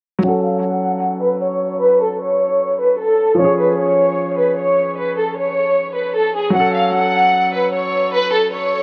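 Brooding and hard-hitting, this hip hop passage moves with a half-time feel. A warm, intimate studio violin section carries the melody up front from 0.2 to 8.8 seconds, bowed sul tasto with light vibrato, while a clear, natural grand piano supplies the accompaniment beneath it. Both parts pass through a low-pass filter and dub echo, and a filter sweep runs across the whole passage. The harmony moves from F#m to C# and back to F#m. Moderate spring reverb and a small room ambience surround an echo-heavy mix whose top end is dulled, as this cut from a longer piece stays in a single section throughout.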